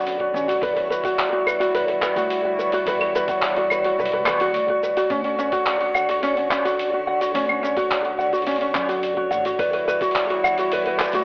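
Fingerpicked ukulele arpeggios with vintage 12-bit grit and analog delay lead this hopeful, pastoral folktronica excerpt at 107 BPM. They sit over a ringing, metallic vibraphone line with hard mallets and delay, sustained sul tasto chords from a dark, intimate string quartet, and woody pizzicato upright bass in the background. A muffled, pitched-down sampler-style kit of claves, handclaps, hi-hat and shaker is soon joined by a thumpy electronic kick, and a reversed, granular, dreamy texture swells in from 0.4 seconds. Dmaj7 and Emadd9 alternate beneath it all, and the whole piece carries a home-cassette, telephone-like sound in light reverb.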